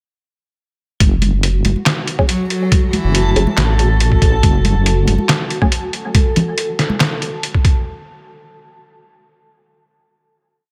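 A half-time 4/4 groove at 140 BPM drives this dark, heavy deep dubstep piece in F# minor, with a gritty, pitched-down kick and a sampler-style kit of closed hat, snare and clap up front from 1.0 seconds, while damped congas echo in the background. A deep, detuned wobble bass with chorus carries a dub-style line, muted sawtooth chord stabs move one shape in parallel through phaser and dub echo, and an intimate cello, bowed sul tasto with light vibrato, plays short answering phrases from 2.3 to 3.5 seconds. Above, a cloudy granular pad drones on F#4 and a reversed, dreamy texture holds a high A4, both bathed in their own reverb, the whole drop sitting in a light reverb.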